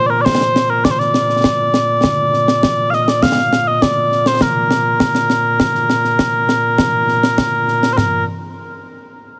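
Proud and stirring, this short excerpt of Scottish traditional pipe music in Bb major moves at 101 BPM in a straight 4/4, with mellow, sweet small bagpipes carrying a continuous solo melody up front with a slapback echo from 0.0 to 8.2 seconds, while concert snare, bass drum and toms, close and dry with bright cymbals, drive alongside from 0.3 seconds, all under light reverb and a heavily compressed, radio-like sound.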